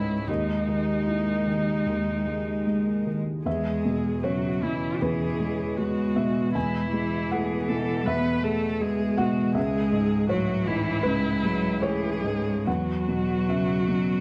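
A soft, felt-muted upright piano sits up front in this tender, intimate neoclassical fragment, its mellow accompaniment carrying audible action noise as it spans from low bass to the upper register under a freely rubato, uneven pulse. A clear, close cello sings a second line with vibrato, while a rich, bowed viola adds distant accompaniment, all three playing throughout the 14.2 seconds. The dark production places them in a recital hall with a lush, lingering reverb as the harmony moves from D#sus4 through E and C#m to a closing Esus2.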